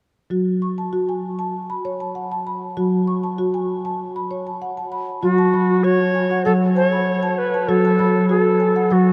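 Meditative world music at 98 BPM in F# minor, this hypnotic fragment from a longer piece opens at 0.3 s with up-front soft-mallet marimba arpeggios on an F#m chord, woody and round on padauk bars, before a reedy, pure cedar flute with vibrato, a soft attack, rolled-off highs and tape echo enters at 5.2 s to carry the melody until 9.1 s, all set in a vast, echoing space with huge ambient reverb.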